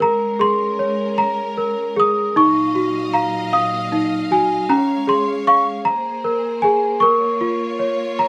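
An unhurried 6/8 pulse at 51 BPM carries this tender, sleepy children's lullaby in Db major, where a worn, slightly out-of-tune celesta sings the bell-like, sweet melody up front over a lush bowed string section holding sustained chords with vibrato and a smooth top, moving from Bbm7 through Ebmadd9/Bb, Db/Ab and Abadd9 to a closing Db6, all played live in one room with light reverb in a short 8.3-second section cut from a longer piece.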